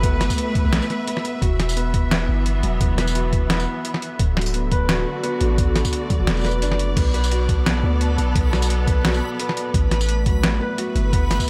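Heavy and tense, this half-time drum and bass excerpt in B minor at 173 BPM sets lush bowed strings pumping under sidechain and a soft felt-muted upright piano arpeggiating through tape echo over a deep, up-front 808-style sine bass, a gritty, pitched-down boom bap kit with crash, hi-hat, snare and tambourine, and a thumpy electronic kick, while a dreamy reversed granular texture drifts in behind from 7.0 s.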